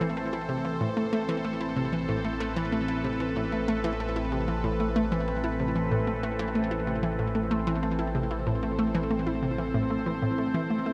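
A straight, steady 4/4 pulse drives this hypnotic, cosmic fragment of sequencer-driven ambient space music, where a round, bright analog pluck repeats its riff with chorus and delay up front, a swirling phased analog pad holds sustained Amadd9 chords through phaser and chorus, and a fat, saturated analog bass anchors the low end, all set in a vast, echoing cathedral-like space.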